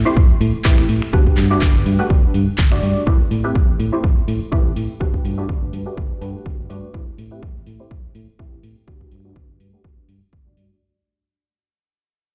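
Filtered disco house with a funky, nostalgic mood, this short cut from a longer piece rides a swung 4/4 groove that fades out across its full 10.8 seconds. A punchy, tape-warm electronic kick sits up front, while a house drum kit adds finger snaps, handclaps and metallic hi-hats, with the hats pumping to the sidechain. Underneath, a fingered electric bass sounds dark, round and foam-muted, played direct and amped through a low-pass filter that sweeps throughout, and it pumps with the sidechain. A funky polysynth comp blends sawtooth and square waves into a detuned, mellow filter pluck with a fast attack and sustained tail, coloured by chorus and phaser and also pumping under a low-pass filter. The harmony alternates between Am9 and Gmaj9, and the whole mix sounds as if played on a big sound system in a bare room, wrapped in large studio reverb.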